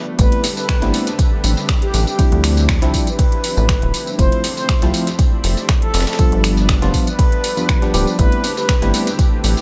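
Smooth and warm, this deep house excerpt at 120 BPM in A minor moves through Am9, Dm11, Fmaj7 and G7 over a deep, up-front electronic kick and a rubbery, bouncy square bass, with a house drum kit of finger snaps, metallic hats and tambourine filtered low and a very quiet, gritty breakbeat sampler-style kit of hi-hat, ride and snare, while a worn, slightly out-of-tune tine electric piano plays stabs through digital delay, a detuned analog pad and a cloudy granular pad sit in the background, and a round, horn-like synth lead warbles its melody through tape echo in a dry, close-sounding mix.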